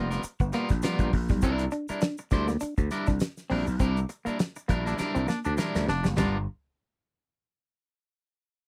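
Playful, funky clip of swung 16th-note funk cut from a longer piece, where a growly overdriven slap bass and a dry, damped 70s drum kit with a fat snare sit up front alongside a twangy, slightly broken-up electric guitar and a dark, clean semi-hollow guitar riff, a grainy tube shaker ticks in the background, the band hits accents from 3.8 seconds, a clear, vibrato-tinged baritone saxophone enters at 4.9 seconds, and a drum fill follows at 5.0 seconds, all in a close, lightly reverberant 1970s-style studio sound over G7#9 and C9 chords.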